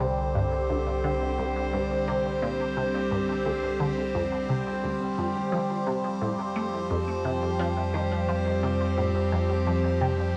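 Mysterious and cosmic, this short excerpt of ambient, sequencer-driven space music moves at 87 BPM in a straight 4/4, shifting from Csus2 to Fsus2 at 5.2 seconds. Up front, an evolving wavetable pad holds sustained chords with a morphing, detuned shimmer, its slow attack and long release coloured by phaser and built-in reverb. Beneath it, a juicy, squelchy blip pluck repeats a riff with a ring-modulated, resonant filter snap, passed through phaser, subtle chorus, cassette tape and tape echo. A round analog bass anchors the low end with a deep, dark tone, while a very quiet thumb-piano-like pluck enters at 0.2 seconds with gentle, tine-like, nasal arpeggios. The whole piece sits in a wet studio reverb with the hazy character of a home recording on cassette.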